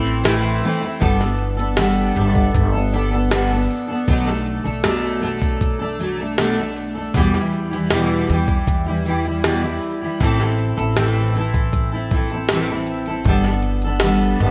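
A fingerpicked, double-tracked steel-string acoustic guitar, full-bodied and up front, opens this easy-going, heartfelt acoustic pop excerpt in G major at 78 BPM alongside a woody, growly pizzicato upright bass, as the chords move through Am, Gadd9, Bm7, Em and back. From 0.1 seconds a gritty, pitched-up jungle sampler-style drum kit adds a thumpy kick, a high-tuned snare and shaker, compressed and treated with gated reverb, all set within a bright, 1980s-style digital production and a lush hall reverb.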